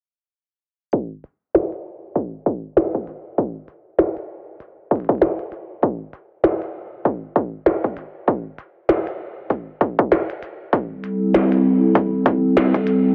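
Lightly reverberant and low-pass filtered under a filter sweep that runs through the whole excerpt, this playful, swaggering glitch hop groove in A minor at 98 BPM swings on a punchy, tape-colored electronic kick with a high-pass filter and a glitchy kit of tiny snare and clicky hi-hats re-recorded in a small room, both up front, joined at 11.0 s by a dark, nostalgic, warbling pad with chorus, built-in reverb and sidechain pumping that fades in slowly on an Am7 chord.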